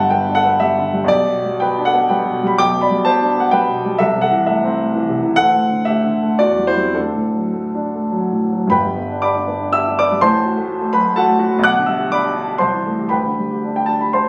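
A warm concert grand piano sits up front as the sole voice in this romantic classical character piece, its deep bass anchoring lyrical, hopeful phrases that span G1 to F#6 in a triple metre shaped by free rubato. The excerpt, cut from a longer work, moves from its opening section into a contrasting passage at 8.7 seconds, with harmonies circling around the home chord of G major. Captured on a phone in the room, the sound carries light, club-like reverb.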